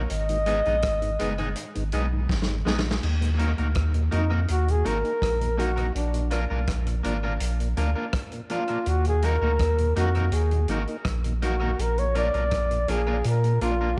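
A dark, intimate roots reggae excerpt at 82 BPM in a straight 4/4, recorded with light reverb and a studio ambience, its meditative, serious mood carried by a breathy, whispered flugelhorn up front, with light vibrato and scooped notes, that takes a solo from 3.0 s as the harmony settles into Eb harmonic minor over Ebm and Bb chords. Beneath it a round sine sub bass sits deep and up front, a mellow tonewheel organ with key click turns through a slow rotary speaker and tape echo in the background, and a twangy, picked electric guitar at the edge of break-up adds tube saturation, spring reverb and tape echo. A vintage drum kit with dark cymbals, a medium-tuned snare, rim clicks and a tight kick plays through tape echo, rolling into a fill from 2.3 s to 3.0 s.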